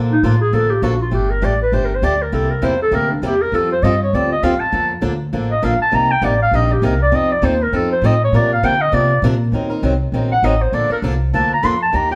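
Lively and playful, this excerpt of acoustic string swing in Bb major moves at 200 BPM with a swung feel, as a breathy, whispered clarinet with vibrato takes an intimate, up-front solo over a bright, boxy picked guitar and a woody, thumpy upright bass, all heard in a moderate studio room through chords such as Bbmaj7, C7, F7 and Ebm6.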